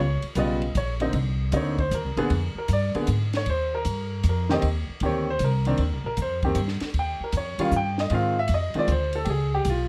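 A clear concert grand piano leads this short, playful and sophisticated jazz piano trio excerpt in Eb major, soloing up front with deep bass, an open tone and long sustain over a swung 3/4 at 155 BPM, moving through colorful harmony such as Db7#11, Bb7 and Eb9. An upright bass plays pizzicato beside it, woody, growly and thumpy with steel strings, while a compact cocktail drum kit sits lower in the mix, dry and acoustic, with dark cymbals, a high-tuned snare and a punchy kick on hi-hat and ride. Light reverb and a dark production frame the two repeated passages, the second beginning at 5.8 seconds.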